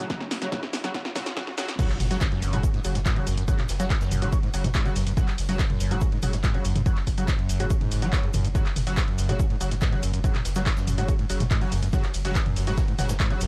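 The rhythm drives hard in a straight 4/4 at 142 BPM, a dark, hypnotic stretch of peak-time techno cut from a longer piece, with a punchy, up-front electronic kick running from 0.1 s and an analog drum machine laying down crash, ride, hi-hat, shaker, handclaps, snare and toms, its snare, clap and hats set in a short room and its cymbals, hats, toms and percussion pumping against the kick. A brief build-up with a drum fill and a very quiet riser gives way at 1.8 s to the drop, marked by a quiet impact, while a swarming, warbling drone of detuned sines sits barely audible under the opening before vanishing. From the drop, a distant brush kit with hi-hat, shaker and a medium-tuned snare adds a faint, roomy acoustic layer, and a thick, saturated sub bass holds F#1 from 2.0 s, overdriven, low-pass filtered and pumping. Above it, a screaming, squelchy sawtooth acid riff ranges from E2 to F#3 with resonant filter sweeps, distortion and lush chorus, while an edgy sync-sweep polysynth fires bright, nasal stabs between C#3 and F#4 through chorus, phaser and dub echo. 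The production is dark and warm, set in a high-pass filtered digital ambience.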